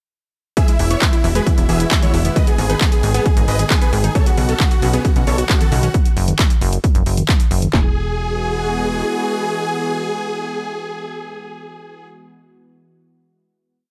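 Uplifting trance at 134 BPM in E major with a euphoric drive: from 0.6 seconds an overdriven, up-front techno drum kit pounds a heavy four-on-the-floor kick with a punchy snare and claps in studio reverb, layered with a second overdriven kit of claps plus programmed hats and toms that pump with the sidechain; beneath it a punchy, funky analog bass plays filter-plucked off-beat notes, while a round analog pluck with ring modulation and a filter sweep runs a chorused, delayed 16-step arpeggio in the background; a huge, detuned supersaw lead repeats a bright sixteenth-note riff over a pedal note in thirds and sixths, with sidechain pumping and tape echo, over a thick, slow-blooming chorused unison pad; after the drop ends at 7.7 seconds, the lead and pad sustain a final Eadd9 chord to 12.1 seconds.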